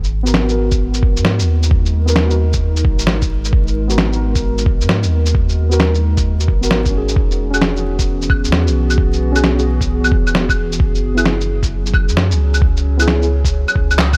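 A round, deep sub bass and a muffled, up-front kit of shaker, snare, claves and handclaps open this wistful, ghostly, swung future garage excerpt, with soft, dark, muted felt-like synth keys and tape echo arriving almost at once, a thumpy compressed kick joining at 0.7 seconds, and a warbling, detuned tape-like pad with phaser and slow-attack chords entering at 1.4 seconds, the bass, keys and pad pumping against the beat amid gritty vinyl crackle until a drum fill at 14.0 seconds.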